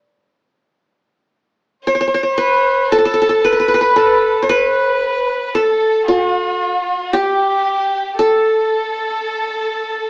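A plectrum-plucked qanun opens this festive Arabic piece in a straight 10/8, its bright-edged triple strings up front, before a dark, lush violin section with sliding portamento and a single airy, intimate solo violin played sul tasto enter at 1.9 seconds to weave a second line beneath it, all set in a moderate room reverb with a small-speaker character.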